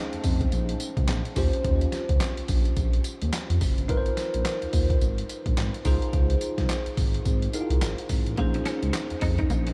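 A gritty, overdriven sampler-style drum kit sits up front with a thumpy kick, medium-tuned snare, handclaps, hi-hat and tambourine, driving this punchy, bouncy new jack swing R&B cut with a swung sixteenth-note feel. Beneath it, a dark, smooth synth bass glides between notes with portamento, while a bright, bell-like tine electric piano with phaser moves through Bbm11, Eb13, Ab69 and Dbmaj9 chords. At 8.4 s, a compressed semi-hollow electric guitar enters in the background with a fingered riff colored by ensemble chorus, all set in a light digital small-room ambience.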